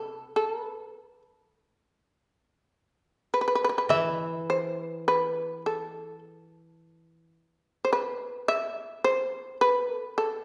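An austere, still mood settles over this short passage of Japanese chamber music, cut from a longer piece and moving in a free, rubato feel. The shamisen carries the melody throughout its 10.4 seconds, its plectrum-plucked tone percussive and buzzing, fretless and powerful, sitting up front in the sound. Beneath it, the koto provides a low accompaniment played with fingerpicks, its dry, woody voice heard much more softly. The koto drops out at 7.3 seconds, leaving the shamisen alone for the final stretch. A recital-hall reverberation surrounds the pair, giving the sparse texture a resonant, spacious setting.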